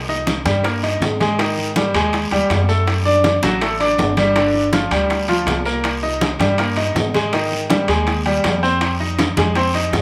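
A bright baby grand piano sits up front in this driving, danceable salsa fragment, its brilliant, polished tone carrying an intimate, present quality with audible action noise and short sustain as it comps between D3 and Eb5. Beneath it, a pizzicato upright bass on gut strings gives a woody, dark, thumpy foundation from G1 to Ab2, entering at 0.0 seconds just ahead of the piano and congas. The percussion fills in by 0.3 seconds: congas sit in the background with a damped, low-tuned, thin-skinned sound that is compressed and saturated, very quiet round bongos stay close and dry, ringing metal-shell timbales sound distant in a large room, and a raspy guiro lives in a live room. At 162 BPM in straight 4/4 and C minor, the harmony moves through Cm7, Ab5, D, G5, Cm7, Abmaj7 and Fm7 over the 10-second passage, cut from a longer piece. A moderate plate reverb and small room ambience frame the ensemble.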